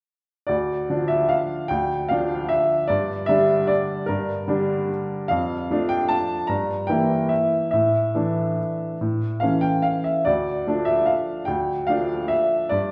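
Heard from further back in a wet recital hall with a 1.7-second reverb, this bittersweet, wistful classical piano waltz in D minor, cut from a longer piece, features a brilliant, woody upright piano playing solo from 0.5 to 12.9 seconds in a rubato 3/4 at 137-158 BPM, spanning D2 to Bb5 as the harmony moves from D minor through G minor and a suspended A before settling back on D minor at 10.3 seconds.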